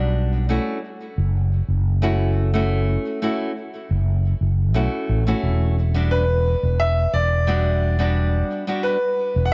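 A fingerpicked flamenco guitar with delay opens this wistful, relaxed sunset chillout excerpt alongside a growly, punchy fretless electric bass sitting up front, the pair moving from Em9 to F#m7 and back. At 6.1 seconds a clear, intimate concert grand piano enters with the melody, bringing digital delay, long sustain, audible action noise and a boxy tone. Light small-room reverb and a dark, warm production keep the short passage close.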